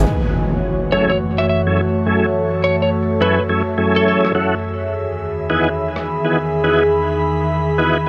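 Up-front tonewheel organ stabs, smooth and clean with chorus vibrato, a slow rotary speaker and dub echo, anchor this playful, gritty glitch hop fragment at 105 BPM in F# dorian, swung on the 16ths and moving from F#m7 to Emaj7 at 4.6 s. A warbling, nostalgic tape-like pad and an airy, breathy pad hold sustained chords and texture beneath. An electronic impact opens the passage, and a slightly broken-up electric lead guitar carries the melody with 12-bit sampler grit and dub echo. A compressed, pitched-down, overdriven rim click sits in the background from 1.4 s to 6.0 s, re-recorded in a large room, all within moderate studio reverb.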